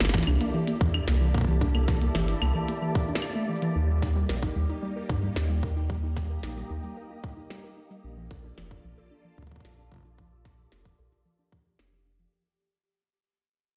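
A straight 4/4 pulse drives this cerebral, eerie IDM excerpt, with a tight, up-front electronic kick entering at 0.1 s alongside a glitchy kit of tiny snare, clicky hi-hats and claves, both re-recorded in a large room. Beneath them, a deep, round sine sub bass with tube saturation sits prominently in the mix. A silky, dark vintage string machine holds sustained chords through phaser, ensemble chorus and sidechain pumping, moving from C13 to Ebmaj7 at 3.8 s and Bbmaj7 at 8.0 s. Over it, a warbling, lo-fi pluck spins mellow, detuned arpeggios through chorus and digital delay, its tone evolving under a filter sweep. A faint pulsing, tempo-synced gated texture on a single G4 hums in the background with chorus and its own reverb. The whole clip fades out across its length, and the sound carries a stone-room reverb, as if played on a big sound system in a bare space.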